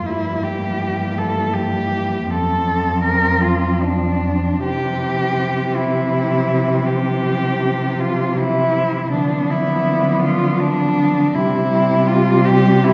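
A slow, rubato pulse in 12/8 gives this classical passage for a quartet of muted cellos an unhurried feel, and the serene mood settles in from the first bar. All four players bow con sordino, giving the ensemble a dark, veiled colour. The lead cello carries the lyrical melody close and up front with vibrato, while a second cello traces an inner line with only light vibrato. A third cello fills out the accompaniment with a smooth top, and the bass cello sits prominently beneath, bringing vibrato and a smooth top of its own to the low register. The harmony drifts from a diminished chord over G through F and C to a diminished chord over D before returning to C. A reverberant recital hall places the listener further back in the room, and the passage, cut from a longer piece, ends at 12.9 seconds.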